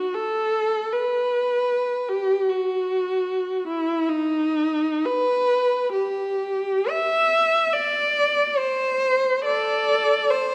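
Meditative and mournful, this short classical fragment of about 10.5 seconds features a single unaccompanied viola played with a free, rubato feel in 4/4. The bowed viola sits up front with a warm, expressive voice, colored by vibrato and gliding portamento as it moves between D#4 and E5. A moderate scoring-stage reverb gives the lone instrument a soft halo of space.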